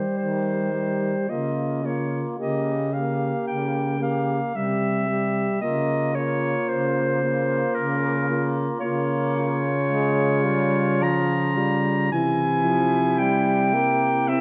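A slow, rubato 3/4 at 56 BPM sets the pace for this melancholic, solemn classical passage for single-reed quartet, cut from a longer piece and lasting 14.4 seconds. The clear, softly attacked clarinet sings the melody up front, while a close-miked alto saxophone carries a second line, a mellow tenor saxophone with vibrato sits in the distance as accompaniment, and a warm baritone saxophone with light vibrato anchors the bass up front. A wet recital-hall reverb surrounds the ensemble as harmonies move from Cm/Eb through Bbm/Db and Gm7b5/Db to a closing C7.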